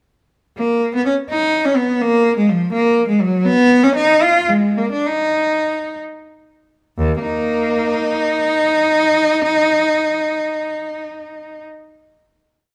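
This is a classical, baroque-style suite movement for unaccompanied cello, a solemn and flowing short piece in 6/8 with free rubato. A single bowed cello carries the melody with a rich, focused tone and vibrato, slowing down from about 2.7 seconds and settling at 7.0 seconds into a final chord that rings until 10.9 seconds. Close, detailed microphones and light reverb keep the instrument up front.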